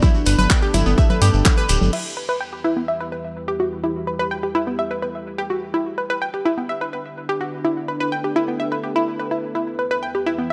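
A straight 4/4 pulse at 126 BPM drives this melodic techno excerpt in E minor, tuned to A4 = 443 Hz, opening on a drop where a punchy, up-front electronic kick leads a layered house kit of congas, crash cymbal, handclaps and hi-hat, all pumping with the sidechain. A grainy, mellow shekere sits distant in the background, and from 0.3 seconds a round, deep analog bass joins up front with a fast attack and pumping sidechain. The drums, shekere and bass fall away around 1.9 seconds, leaving a bright, wave-folded analog pluck spinning arpeggios through chorus and dub echo as a filter sweep moves across it to the end at 10.5 seconds. Beneath, a dark, moody analog pad holds evolving, full-bodied chords with a slow attack, a sub octave and chorus, pumping with the sidechain. The harmony alternates between G and E minor, and light digital reverb frames a mood that is both driving and melancholic.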